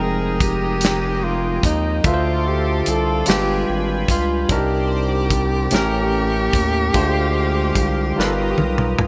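Slow six-eight R&B with a yearning, sultry mood, cut from a longer piece, where a dark, breathy tenor saxophone carries the melody up front in an intimate subtone with vibrato, scooped notes and digital delay. A barky, clean tine electric piano played through a combo amp and a detuned sawtooth analog pad with chorus fill out the rich extended chords, while a round, deep analog bass sits up front and a warm soul drum kit with a tight kick and medium-tuned snare enters at 0.4 seconds, rounding off with a fill from 8.2 seconds. A moderate plate reverb and bright 1980s-style digital production frame the sound.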